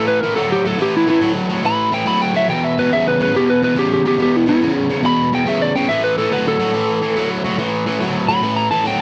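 A dry, close 1970s-style studio sound frames this swaggering, driving rock excerpt at 141 BPM in swung 4/4, where a bright, double-tracked overdriven guitar sits up front with a crunchy picked riff touched by spring reverb, moving from A5 to E5 and back to A5, while a dark, slightly broken-up, compressed lead guitar plays a picked solo melody across the full 9 seconds.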